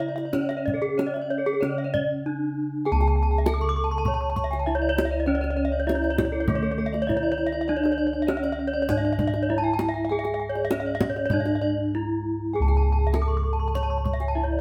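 A straight 4/4 pulse drives this hypnotic, brilliant Balinese gamelan excerpt, where a bronze metallophone struck with a horn mallet carries the melody in a boxy small-room sound, a bright second metallophone and a close, dry wooden-mallet third spin shimmering paired-tuned arpeggios above, round beating bossed gongs sit full and up front in the bass, and a tight kendang played with soft hands keeps time across the excerpt, which includes a brief break at 11.6 seconds, all in a moderate reverb with the band playing live together.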